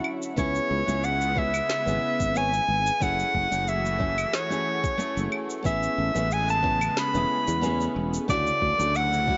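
Sunset chillout with a sunny, blissful mood, moving at an easy pace with a light swing. A breathy soprano saxophone carries the melody up front, bright and jazz-styled with vibrato and a touch of tape echo. Beneath it, a dark, fingerpicked nylon-string guitar plays classical-style accompaniment, finger squeaks audible, also treated with tape echo, while a lush, thick unison pad of detuned sawtooth and square waves sits in the background with slow-attack sustained chords colored by chorus and phaser. Electronic claves, shaker and a woody snare open the groove, and at 0.4 seconds a soft, tape-warm electronic kick and a growly, direct fretless electric bass with analog chorus join as the chords move from C#m7 through F#m9 and Amaj9 to Dmaj9. Light reverb and a gently rolled-off top end keep the mix soft, and the clip is cut from a longer piece.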